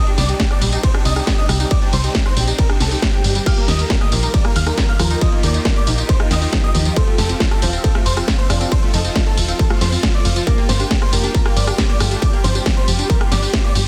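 Euphoric and driving, this uplifting trance excerpt sets a huge, detuned supersaw lead with phaser and tape echo over a distorted, up-front electronic kick, a techno drum kit with cracking snare, a punchy, round FM bass, a lush supersaw pad, a chorused analog pluck playing arpeggios and a dark grand piano line, all pumping to the sidechain except the kick, while a soft, boxy felt-muted upright piano with audible action noise joins at 3.5 seconds in a dense, heavily limited mix with light reverb.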